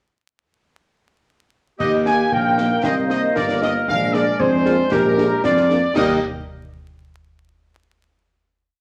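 A wet, roomy studio reverb and a layer of vinyl crackle surround this short, festive military-style march for wind band, set in Eb major at 115 BPM in a straight 2/4. At 1.8 seconds most of the band begins together: a bright, tight trumpet section carries the melody, and a pure-toned large flute ensemble sits in the background, doubling the tune in unison and in sixths. A clear woodwind section with a smooth top and light vibrato adds a counter-melody and sustained chords, while a dark trombone section holds distant chords. Underneath, a mellow tuba plays the bass on the beats, and close-sounding clash cymbals, concert bass drum and concert snare drum give a rousing marching pulse of snare over a bass drum on the beat. A very quiet, close-miked French horn section enters at 2.1 seconds with after-beat chords, and the harmony moves from Eb through Cm7 and Bb7 before the piece closes on a final Eb chord at 6.0 seconds.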